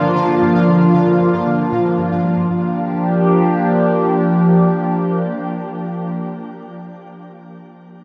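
A phased analog pad, a tight sequenced synth and a pulsing gated texture all sound together from the opening of this short cut from a longer piece of mysterious, expansive ambient space music. The synth arpeggio sound fades out over the first 2.5 seconds, and the gated texture stops at that point. The sequenced synth, a driving, detuned sawtooth riff with a filter pluck and a mellow tone, sits in the background and drops away at 2.7 seconds. Up front, the swirling, vintage pad holds sustained G minor 7 chords with a slow attack, treated with phaser, chorus and shimmer reverb, and carries on alone until 6.3 seconds. During the opening seconds, the bright, tempo-synced gated texture adds a higher shimmer behind it, softened by chorus and its own reverb. A huge, wet reverb surrounds the whole track, and the sound is coloured by worn cassette tape with warbly pitch drift.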